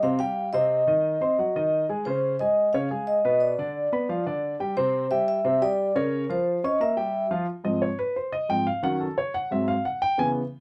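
Recorded in a small, wet-sounding booth with a short reverb tail, this brief cut from a longer jazz piece moves at a lively 177 BPM in 4/4 with a straight feel in Ab major, its mood sophisticated. A vibraphone played with soft mallets carries the melody until 7.3 seconds, metallic and airy with a slow motor vibrato, while a dark, vintage-toned baby grand piano accompanies through chords such as Cmadd11, Dbmaj7 and G7, both instruments sitting up front. From 7.5 seconds the piano plays alone, taking a short, smooth solo over Ab6, Ebm7b5 and Ab7 before stopping at 10.4 seconds.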